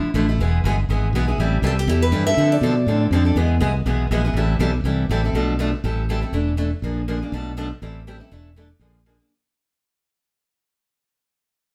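At a blistering 243 BPM in 4/4, a swung eighth-note feel drives this fiery, virtuosic jazz manouche fragment in A minor. A boxy, parlour-toned picked steel-string acoustic guitar picks the accompaniment with audible finger squeak, while a growly, direct fingered electric bass sits up front and a bright, auditorium-voiced second acoustic guitar darts in with a brief picked melody from 1.7 to 3.0 seconds. The changes move from E through Am7 and Dm7 into a Bm7b5, Am7, E7sus4 and Bb7 turnaround, all set in a wet studio reverb heard from further back in the room, and the music fades out from 5.3 seconds.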